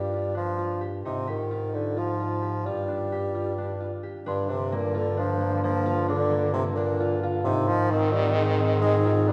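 A bassoon with vibrato carries the melody up front in this short stretch of contemporary chamber music, cut from a longer piece and set in a restless, urgent 7/8 at 262 eighth-note beats per minute in G phrygian. Beneath it a clear bass clarinet holds down the low end, also up front, while a bright concert harp rings out thumb-plucked arpeggios in the middle register, all three sounding from the start. At 4.3 seconds a mellow French horn enters in the background with a second line colored by vibrato, and a delicate, bell-like celesta struck with soft felt hammers adds a sweet, high texture until 7.7 seconds. The harmony moves from an open G seventh chord through Ab and G fifths to G minor seventh, settling on Ab6. The ensemble is heard from further back in a recital hall, where a wet reverb gives the playing a sense of space.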